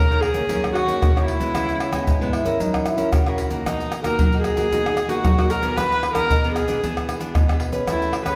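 Yearning and bittersweet, this excerpt blends samba and choro in a straight four-four feel. A dark viola carries the melody from the start, one player bowing close and intimate with an airy tone, a soft attack and light vibrato. Beneath it, a classical nylon-string guitar with fresh strings is fingerpicked in accompaniment, its finger squeaks audible. Egg shaker, pandeiro, tamborim and a tight surdo sit up front from 0.1 seconds, played with hard hands. Between 1.8 and 3.5 seconds, a mellow, breathy trombone slips in with a whispered, jazz-style second line, and the performance rings in a church or concert hall with a wet recital-hall reverb.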